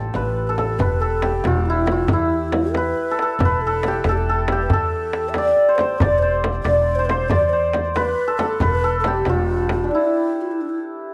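A straight six-eight pulse carries this stately, warm Persian modal ensemble piece, cut from a longer work. The shimmering hammered santur sings the melody up front over a growly, woody pizzicato upright bass, while a breathy, hollow low ney traces a second line. A dry frame drum is joined by a deep, soft-handed tombak that enters at 0.8 s and sits in the background, all within a moderate echo-chamber reverb. Around 9.8 s the drums and then the bass stop for a break, leaving the ringing santur and the ney, which ends at 10.8 s, to carry on until 11.1 s.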